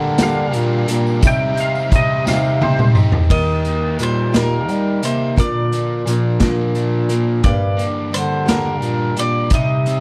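Dusty and wistful, this folk rock and heartland rock excerpt sways in 6/8 at 58 BPM over Gm, Cm, Eb and Bb, with a picked archtop acoustic guitar with finger squeak, a double-tracked overdriven semi-hollow guitar riff, an up-front roomy bass clarinet, and a punchy vintage drum kit with dark cymbals in a small, pumping room, while a twangy, compressed electric guitar line, a jingly tambourine and a very quiet, reedy accordion colour the opening until a drum fill at 2.3 seconds leads to a bright, double-strung bowl-back mandolin melody from 3.3 seconds, all in a dry, close sound.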